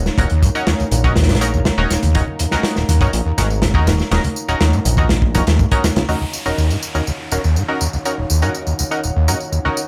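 A squelchy, aggressive acid line in sawtooth tones leads this raw, gritty breakbeat excerpt in Eb minor at 122 BPM, its distortion, chorus and cassette-tape grit riding over an Ebm7 chord while nasal, band-passed chord stabs with ring modulation, chorus and delay flicker above. A crunchy, saturated breakbeat kit with a tight kick and rolled-off top sits up front alongside a fat, detuned analog bass with tube saturation and very quiet low-tuned congas, all three dropping out at around 6.1 seconds. A deep, moody pad with sidechain pumping and a tape-warm tambourine carry on in the background, joined by an electronic downlifter to the close, all in light small-room reverb.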